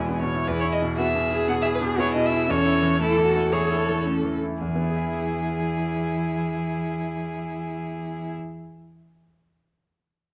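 A quick classical-period movement for piano quartet in E major, this cheerful, lively passage is cut from a longer piece and moves at 115 BPM in 4/4 with uneven, rubato beats, slowing down over its first 4.6 seconds. The violin carries the melody up front with a focused, vibrato-rich tone and a smooth top, while the cello sings a second line below with expressive portamento. A bright, brilliant concert grand supplies accompaniment with deep bass and a natural sound, sitting up front alongside the violin, and the viola fills in beneath with an even, smooth bowed tone set lower in the mix. The harmony rests on E, shifts to A over E at 2.5 seconds, and returns to E as a new section begins at 4.6 seconds. Close, detailed microphones and light reverb keep each of the four players clear, with the piano sounding on alone briefly after the strings stop at 8.3 seconds.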